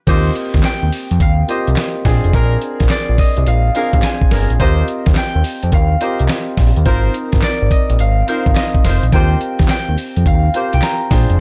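A dark, small-room sound frames this confident, bouncy new jack swing R&B cut at 106 BPM with a swung 16th feel, where a gritty, compressed sampler-style drum kit (thumpy kick, fat snare, hi-hat, tambourine, handclaps and crash) sits up front beside a thick sawtooth-and-square analog bass with a moving notch, while a ringing, fingerpicked concert harp carries the melody over an open, long-sustaining grand piano, smooth jazz-style horn section stabs, and a distant, very quiet group handclap that enters at 0.6 seconds.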